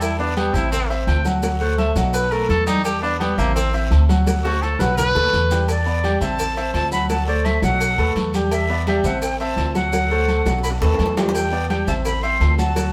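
Recorded live by a band in one stone room with moderate reverb, this driving, danceable salsa excerpt in E minor at 170 BPM opens with an up-front, punchy trumpet solo with light vibrato over clear concert grand piano, a woody, thumpy pizzicato upright bass and background congas, cowbell and bongos, ringing agogo bells and timbales, raspy guiro and grainy maracas, with drum fills at 4.3 and 10.5 seconds, before a breathy, bright concert flute takes the melody at 5.7 seconds over a repeating Em7–Am–D7–B7 progression.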